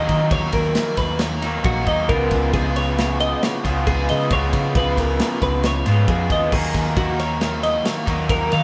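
A clean, twangy twelve-string electric guitar plays compressed arpeggios with a vibrato effect over a raw, overdriven, double-tracked garage guitar riff and a dark, round hollow-body short-scale bass, while an up-front acoustic studio drum kit enters at 0.1 s with a punchy kick, medium-tuned snare, ride and crash, as this intricate, wistful math rock and midwest emo cut in 5/4 at 135 BPM moves from D#m7 to C#7 and returns to D#m7 at 6.5 s, the band playing together in one room with light reverb.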